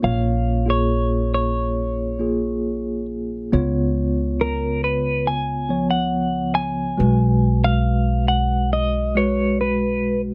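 A straight 4/4 pulse at 69 BPM carries this melancholic, intimate acoustic folk-pop ballad excerpt, where a woody, thumpy pizzicato upright bass on gut strings sits beneath a tine electric piano with medium tremolo, played through a combo amp and held up front, while a clean, picked, compressed electric guitar with harmonic tremolo carries the melody over chords moving from Bbm to Db7 at 3.5 seconds and Abm7/Cb at 7.0 seconds, all captured with close, detailed microphones and little reverb.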